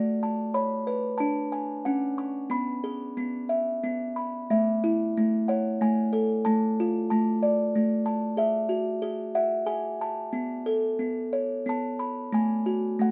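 A close-miked music box sits dry and up front in a moderate studio room, its large box giving a full, delicate, tinkling tone as it plays alone through this 13.1-second cut from a longer children's lullaby. In a gently rubato 3/4 sway, the innocent, sleepy tune moves through soft colors like Bmadd9, a darker Dm and an Eadd9, settling on Aadd9 at 10.3 seconds before a rootless D closes the passage.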